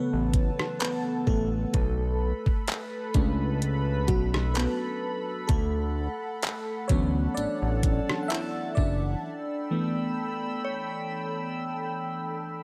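A lightly swung 4/4 groove from an overdriven, detuned 8-bit drum machine, with a thumpy kick, handclaps, hi-hat and rim click, carries this dreamy, romantic contemporary R&B excerpt, where a lush FM electric piano with a soft pad layer leads throughout over a fat analog bass, a shimmering chorused pulse-width pad with sidechain pumping and a very quiet glassy synth bell, until the drums stop at 9.0 seconds and the bass at 9.2 seconds for a dry break on a G69 chord.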